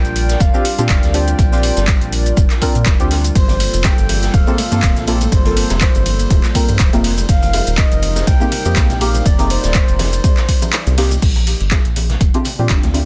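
In a swung 4/4 groove, a deep, layered electronic kick sits up front and drops out briefly at 10.7 seconds. Around it, an overdriven deep house kit supplies metallic hi-hats, handclaps, ride, crash and shaker, while a very quiet, gritty garage kit with a medium-tuned snare, hi-hat and shaker sits in a small, pumping room. Vintage, band-limited bongos and congas join in the background from 3.5 seconds. A round, dark analog bass and a hollow, detuned pad both pump with sidechain, the pad adding chorus and 12-bit sampler grit to its mellow sustained chords. Soft, wave-folded chord stabs treated with chorus, phaser and tape echo move through lush extended harmonies, while a breathy, flute-like lead with vibrato and a sub octave floats on analog chorus and dub echo until 11.0 seconds. The mood is warm and relaxed, set in a small room ambience with a dense, heavily limited modern master.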